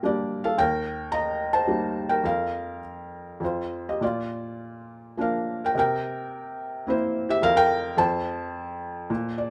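A felt-muted upright piano plays alone from the start, soft and intimate with audible action noise, short sustain and a mellow, up-front tone, in a lyrical classical piece in 3/4 at 98-112 BPM with a rubato feel and a sunny mood. Tuned to A4 = 436 Hz and spanning Eb2 to Bb5 in light reverb, it moves through Gm/Bb, Eb, Fsus4, Bb and C7 before settling on F. A brief felt piano fill arrives at 9.1 s, just before this 9.5-second clip from a longer piece ends.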